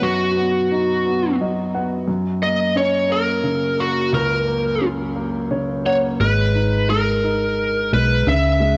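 A small-room, cassette-taped home recording with light reverb frames this romantic, heartfelt six-eight pop ballad at 58 BPM, cut from a longer piece. An overdriven, bluesy lead guitar with tape-worn distortion carries the melody up front over a clear, intimate grand piano whose long sustain and audible action noise add polished fills between chords moving from B to F#. At 6.2 seconds a round, punchy, foam-muted vintage electric bass enters as the harmony shifts to G#madd9 and then C#m.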